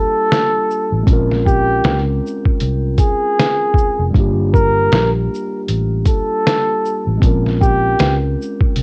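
A breathy flugelhorn and a mellow tine electric piano open this melancholic, reflective lo-fi hip hop excerpt together at 0.0 seconds, in G minor at 78 BPM with a 16th-note swing. The flugelhorn carries the melody up front in a jazz style, with light vibrato and scooped notes between G4 and Bb4, while the clean electric piano, heard through its built-in speakers, accompanies from G3 to Bb4. A lo-fi sampler-style drum kit comes in at 0.3 seconds, compressed, pitched down and muffled, with a thumpy kick, a medium-tuned snare, hi-hat and shaker, all coloured by 12-bit sampler grit and sitting up front. At 0.9 seconds a dark, foam-muted fingered electric bass joins, round and punchy and amped, holding the low end from F1 to Db2. The harmony moves between Gm9 and Bbm9, and cassette tape colours the horn, keys and drums, while light reverb lends the whole home-recorded sound a hazy, intimate feel.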